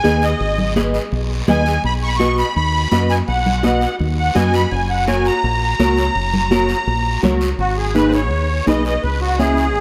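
Soaked in plate reverb for a dreamy haze, this passionate, driving cumbia excerpt sets a reedy, shimmering musette accordion with delay up front over a twangy, slightly broken-up electric guitar with ensemble chorus, a dark, round, punchy fingered dub bass, high-tuned congas played with soft hands in the background and a raspy, distant guiro, with the accordion taking a solo from 7.6 seconds as the chords move from G#m through B and F# to C#m.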